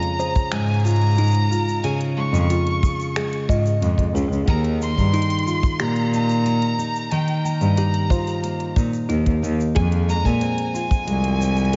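Playful and pastoral, this short folktronica passage moves at 91 BPM in a straight 4/4, drifting from Db through Ebsus2 to Fm at 9.8 seconds. A fingerpicked nylon-string guitar carries arpeggios from the start, its fresh strings giving a full-bodied classical sound with audible finger squeak, while a distant bowed violin sings the melody with intense vibrato, both touched by analog delay. A delicate, tinkling music box enters at 0.2 seconds with a second line in the background, roughened by vintage 12-bit sampler grit and also sent through analog delay. Underneath, a single bowed cello with a reedy gut-string tone in period style holds the bass up front from 0.5 seconds, beside a dry, tight acoustic kick drum that sits forward in the mix from 0.4 seconds until 11.0 seconds. An organic electronic kit adds finger snaps, crisp hi-hats and shaker, re-recorded in a large room, while light studio reverb and a soft top end keep the whole passage mellow.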